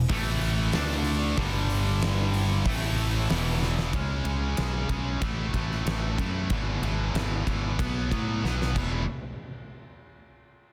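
A growly, bright fingered electric bass sits up front in this energetic, powerful hard rock passage, anchoring the low end beneath the riffs of a scooped high-gain guitar and a warm overdriven electric guitar, while a double-tracked distorted guitar adds background weight until 3.9 s. A huge arena drum kit with a fat snare and punchy kick plays drum fills at 3.6 s and 8.4 s as the chords move from A5, D5 and G5 into a C#5, A5, E/G# and B5 run. The dense, heavily limited mix has a small room ambience.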